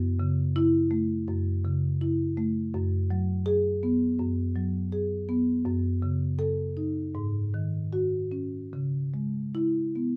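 Contemporary classical music for solo marimba, hypnotic and reflective, this brief 10.2-second excerpt from a longer piece drifts in a rubato 4/4 around 73-84 BPM, the soft-mallet marimba sounding woody, mellow and round on its rosewood bars as it sits up front in light reverb, spanning F#2 to A4 through F#m7, G#m7/F#, F#m6 and G#7sus4 before settling on C#m7.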